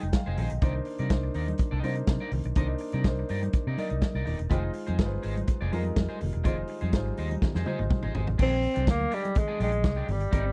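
Danceable and driving, this short disco cut at 124 BPM in 4/4 rides a tight, dark-cymbaled soul drum kit and a round, punchy fingered electric bass up front, with faint ringing congas, a twangy, slightly broken-up electric guitar with subtle chorus, and a natural concert grand piano with deep bass moving through Fm7 and Cm9 in a dry room. After a drum fill from 7.4 seconds, the piano drops out at 8.4 seconds as the harmony shifts to Bb13 and a vintage alto saxophone with light vibrato and a soft attack steps forward with a jazz-style solo line.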